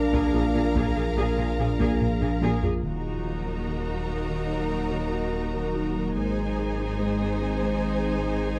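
Closely miked and lightly reverberant, this vast, relentless cut from a hybrid orchestral and electronic film score moves at a straight 72 BPM in Eb dorian, shifting from Bb7 to Ebm at 2.8 seconds and to Ab at 6.2 seconds. Lush, vibrato-rich violins carry a second line over intense viola accompaniment, while distant, dark French horns and a moody, detuned ambient pad with chorus and built-in reverb hold sustained chords. A thick, saturated sub bass and focused cellos anchor the low end, joined briefly by smooth double basses until 2.5 seconds, as a ringing, harp-like synth pluck with chorus, phaser and tape echo plays arpeggios and a hard-stick taiko ensemble drives until 4.5 seconds, with a drum fill from 2.0 seconds.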